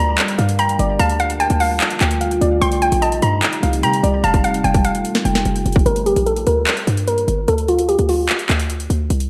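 Soaked in plate reverb, this dreamy, dark and melancholic half-time trap excerpt sets a hollow, detuned square pluck melody over a soft, round second pluck and a deep, evolving ambient pad that both fall away near 5.8 seconds, while a punchy, tight 808-style bass and an overdriven trap kit with hard-clipped kick, sharp snare, metallic hats and handclaps sit up front, with a drum fill arriving at 4.2 seconds and a filter sweep on the pluck from 5.9 seconds.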